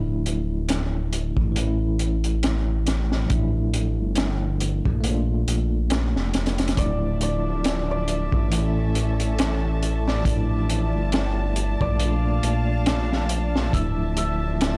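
A dry, gritty cassette-tape sound frames this cinematic, hypnotic trip hop excerpt at 69 BPM in D harmonic minor, where a bell-like tine electric piano with tremolo and tape echo, a deep rumbling detuned saw bass and a crunchy, saturated breakbeat kit with a high-tuned snare circle through Dmadd9, A and Bbmaj7 before a shimmering hammered santur melody and intimate sul tasto chamber strings enter at 6.8 seconds.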